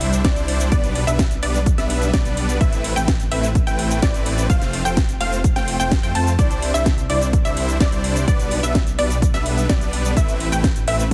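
A punchy, up-front electronic kick enters at 0.2 s to drive this euphoric, triumphant festival progressive house fragment, landing on parts already sounding from the start: a house kit with cracking snare, metallic hats and shaker, huge bright supersaw chords with delay, a thick, mellow detuned saw bass with chorus, and lush filter-pluck arpeggios with a cassette-tape tint. The synths pump under sidechain over a Cadd9–G/B–Amadd9–F progression, while a barely audible impact opens the heavily compressed, radio-like, nearly reverb-free mix.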